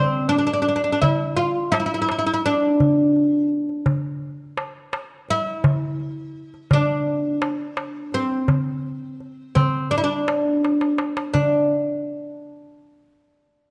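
The oud opens the recording, its fretless, double-strung voice sounding bright and woody yet deep as it carries a melancholic, soulful melody in a close range up front. This fragment of a longer Turkish makam ensemble piece moves in a straight four-beat metre at an unhurried pace. A darbuka with a metal shell joins almost at once, played with soft hands and heard crisp, close and dry alongside the plectrum-plucked oud. A drum fill at 10.6 seconds leads into a new section at 11.4 seconds, and both instruments stop at 11.7 seconds. The pair sits in a moderate recital-hall reverb, and the acoustic instruments keep a melancholic, soulful character throughout.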